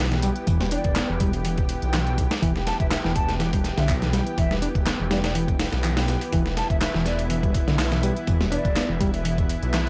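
Vinyl crackle and light reverb frame this funky, energetic breakbeat excerpt in E minor at 123 BPM, where a gritty, compressed sampler-style drum kit with a thumpy kick sits up front, a crisp, layered garage kit adds handclaps and hi-hats beneath it, and a barely audible electronic impact marks the opening half second. A thick, menacing detuned saw bass holds the low end against a lush unison pad whose sustained chords carry chorus and sidechain pumping. A reedy, lightly overdriven electric piano riff with tape echo runs throughout, while a breathy, hollow concert flute melody with telephone filtering and tape echo floats in the background from 0.7 to 8.9 seconds.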